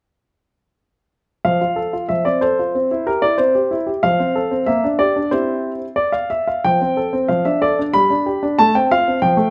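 Cheerful and elegant, this short excerpt from a classical-period piano sonatina moves at 93 BPM in a straight 2/4, set in F major with the tuning pitched at A4 = 438 Hz. A single baby grand piano carries the whole passage, playing solo from 1.4 to 9.5 seconds across a range from F3 to B5. Its tone is warm and natural, placed up front by close, detailed microphones that catch the instrument's clarity. The harmony travels from F through C, G minor over B-flat, D minor over F, and G before settling on F over A. A moderate recital hall reverb surrounds the piano with a graceful sense of space.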